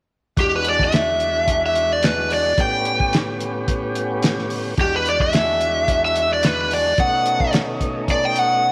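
A straight-eighth soul blues groove at 109 BPM in 4/4, with a light swing on the sixteenths, rolls along in E mixolydian with a rollicking, swaggering mood, moving through E7, A7, E7 and B7 in this short excerpt cut from a longer piece. A cloth-damped, thuddy acoustic drum kit gives a muffled, gritty feel with a fat snare, tight kick and hi-hat under a rolled-off top. A full, thick tonewheel organ through a slow rotary speaker with light overdrive and vibrato sits beneath an up-front, picked electric lead guitar whose overdriven small cranked amp carries the melody, all in a moderate echo chamber reverb with small room ambience.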